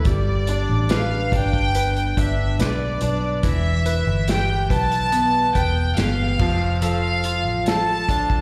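Heard as a live gig through the venue's PA, this short cut from a longer piece carries a small room's ambience folded into the reverb of a recital hall. It is a hopeful, tender pop ballad at 71 BPM in a straight 4/4, moving from G to Em at 3.4 seconds and on to Dm/F at 6.4 seconds. Up front, a studio violin section carries the melody between D5 and A5 with a reedy, gut-string tone, light vibrato and period-style bowing, wrapped in slapback echo and delay. A clear, polished baby grand piano accompanies in the middle register, while a bright, picked parlour steel-string acoustic guitar plugged in to the system spins arpeggios in the background, both touched by slapback echo. Underneath, a vintage foam-muted fingered electric bass sits dark, round and punchy near the front, and an acoustic drum kit played with bundle sticks adds crash cymbal, hi-hat, a tight kick and a medium-tuned snare.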